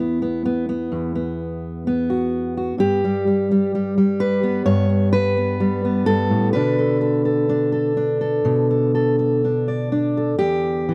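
A fingerpicked steel-string acoustic guitar plays alone in this short folk excerpt, its fresh strings sounding warm and up front across a range from E2 to D5. The mood is hopeful and peaceful, moving at a rubato 64 BPM in 4/4 through Esus2, Gadd9, Bm7 and, at 10.4 seconds, Em7. Light reverb touches an otherwise dry, close recording with a 1970s studio character, and the guitar is tuned slightly above standard at A4 = 441 Hz.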